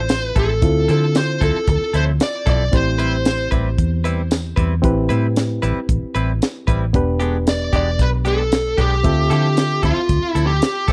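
A smoky, brooding straight-eighth soul blues in A minor at 114 BPM opens with a dark, overdriven lead guitar singing the melody over a barky, reedy electric piano and a round, foam-muted fingered bass, joined at once by a tight, dry funk kit with high-tuned snare, hi-hat and tambourine and by twangy, compressed clean guitar stabs with lush chorus; the lead drops out at 3.5 seconds and returns at 7.5 seconds as the chords move from Dm9 to Am9 and E7#9, all in a close, dry 1970s-style studio sound.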